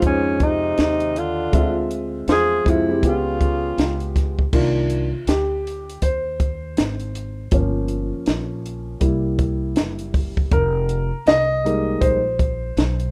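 Smoky and mellow, this swung jazz-hop excerpt at 80 BPM in C phrygian opens with a breathy alto saxophone melody full of vibrato and scooped notes over a soft subtone tenor saxophone line, both stopping at 4.1 seconds so the dark, boxy grand piano can take a solo from 4.5 seconds, carried throughout by woody pizzicato upright bass and a compact cocktail kit with a high-tuned snare and punchy kick in a small room with a rough home-demo feel.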